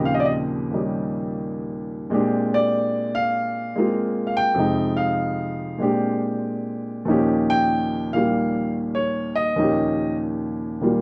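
Playful and relaxed, this short solo jazz piece for piano moves at 98 BPM in 4/4 with a swung eighth-note feel and rubato phrasing. A warm baby grand carries the whole performance, sitting up front and ranging from Eb2 up to G5. The harmony drifts through rich extended chords, opening on Eb13 and passing through Bb13 and Fm7 before settling on Eb9 at 7.1 seconds. A moderate studio reverb gives the piano a sense of a real room, as if captured live. Lasting about 11 seconds, the clip is cut from a longer piece.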